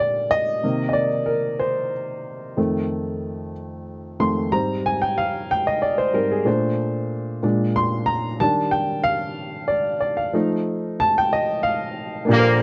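Hopeful and reverent, this gospel excerpt moves at a slow 62 BPM in a straight 6/8, tuned slightly low to A4 = 437 Hz. An intimate, woody upright piano carries it alone from 0.0 to 12.3 seconds, sitting up front with its action noise clearly audible as it spans from Bb1 up to C6. The harmony passes through Cm7, F7, Abmaj7, Bbmaj7 and Bb7 before settling on Ebmaj9 and returning to F7. At 12.3 seconds a tight, vintage-sounding horn section enters up front with the melody, playing in a jazz style with light vibrato in a low register from D3 to Bb3. Light reverb and a dark, warm production give the recording an intimate, mellow character.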